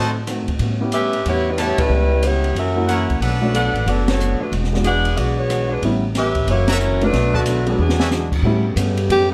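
Moderate large-studio reverb surrounds this joyful, energetic big band swing excerpt, cut from a longer piece. A tight, mellow saxophone section carries the melody up front over a woody, growly upright bass, a clean hollow-body archtop guitar in the background and a natural grand piano, while a brilliant trumpet section adds stabs and the acoustic drum kit, with dark cymbals, a high-tuned snare and a punchy kick, marks band accents and plays a brief fill at 7.8 seconds. At 8.4 seconds a soft-attack, vintage trombone section enters with sustained chords, and a breathy, clear alto saxophone with scooped notes appears at 9.1 seconds.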